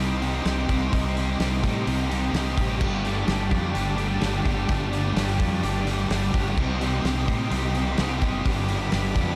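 A straight 4/4 pulse at 128 BPM drives this blissful, wistful slice of shoegaze and dream pop rock, cut from a longer piece, with a loose indie drum kit entering at 0.2 s on punchy kick, a medium-tuned snare, hi-hat and dark crash cymbals heard in a small acoustic room. Underneath, a fingered electric bass sits up front with a round, fuzzy overdriven tone. Two guitars carry the riffs: a thick fuzz guitar in the low register, thickened further by distortion and ensemble chorus, and a biting overdriven guitar above it, its picked notes trailed by reverse reverb. Far behind them, a lush, airy synth pad of detuned sawtooth and square waves with a noise layer holds soft-attack chords, its chorus adding shimmer to its bright upper range. The harmony drifts from Cmadd9 to Gsus2 and back, settling on G near the close, and a moderate plate reverb soaks the whole dreamy mix.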